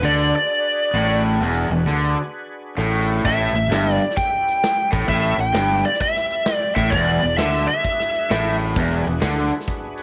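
A biting lead guitar, overdriven and fed through tape echo, leads this gritty, raunchy cut from a longer blues rock and southern rock piece, riding above a raw, double-tracked garage guitar riff and a growly, fuzzed fingered bass. Set in E mixolydian at 131 BPM in 4/4, the groove swings its eighth notes and moves from E7 to A7, then Am7 before returning to E7. Underneath, an overdriven tonewheel organ holds thick sustained chords very quietly, its slow rotary speaker, chorus vibrato, key click and percussive second-harmonic attack adding grit to the background. A big acoustic rock kit joins at 3.3 seconds with hi-hat, a tight kick and a medium-tuned snare, sounding natural in a large room. The lead line stops at 8.6 seconds, leaving the up-front riff guitar, punchy bass, drums and organ to carry the swagger, all framed by light reverb and a small-room ambience.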